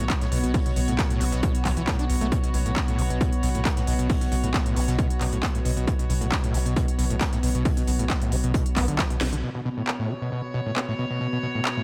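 Light reverb and small-room ambience frame this hypnotic, relentless slice of driving peak-time techno, cut from a longer piece. A punchy, tape-warm electronic kick sits up front beside a layered techno kit of cracking snare, smooth hats and handclaps, while a very quiet brushed jazz kit adds natural acoustic grain and a deep, saturated sine sub bass pumps beneath until 9.4 s. Above them, a screaming, squelchy sawtooth acid line with distortion, chorus and a filter sweep rides over a moody, warbling ambient pad drone and a nasal, gut-string chamber string section, with a drum fill and band accent landing at 9.2 s.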